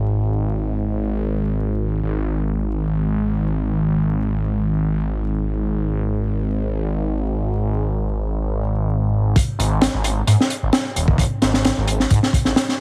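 Heavily compressed, radio-like and dry under a layer of vinyl crackle, this raw, funky breakbeat excerpt in free time opens on a thick, swirling phased saw bass, detuned and up front, which holds alone until a crunchy, gritty breakbeat kit with a punchy kick and high-tuned snare drops in at 9.4 seconds, the bass ringing on until 12.5 seconds.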